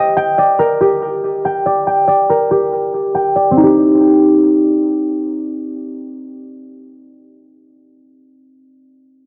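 Ringing, thumb-plucked concert harp arpeggios sit up front from the start, running from C4 to G5 through a low-pass filter and delay with a filter sweep over the first 3.6 seconds, in this dark, melancholic half-time hip hop fragment at 141 BPM in C minor that moves from Bb6 to Cm at 3.6 seconds inside light reverb and small room ambience.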